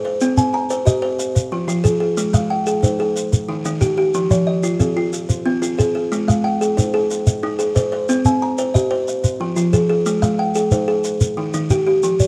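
Southern African traditional music in a mbira-style interlocking cycle, this rippling, warm excerpt from a longer piece moves in a straight 12/8 feel over a cycle of Cm, Fm, Ab and Eb. Two buzzing kalimbas play arpeggios throughout: one up front, woody and ringing with a hollow-box, vintage, band-limited tone, the other darker, shorter and smoother, and a grainy, mellow shekere sits close beside them from 0.2 seconds. Light reverb and small-room ambience frame a rough home-demo sound flecked with vinyl crackle.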